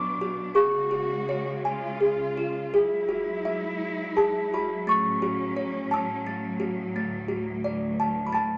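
Children's lullaby in a gentle, dreamy 6/8 with a loose rubato feel, cut from a longer piece. A delicate, tinkling music box carries the melody up front, its tone mellow and dark, while a lush, distant string section holds bowed chords with vibrato beneath it. Both parts play throughout the 8.6 seconds, and the whole sits in a short, wet reverb.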